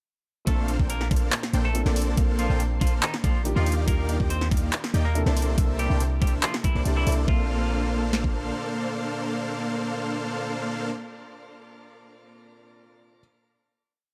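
Future bass at 141 BPM in a half-time feel, bright and playful in Bb major, this short piece opens straight into a drop at 0.5 seconds. A huge, detuned supersaw plays dotted-rhythm chords with tape echo and pumping, while a twangy clean electric guitar repeats a riff in octaves. Underneath, a felt-muted upright piano holds soft chords with audible action noise, a very quiet ethereal pad sustains, and a boomy 808-style bass follows the chords until 8.5 seconds, driven by overdriven trap and dubstep kits with a knocking kick, hat rolls and handclaps before everything settles onto a final Bbmaj9 chord at 7.3 seconds.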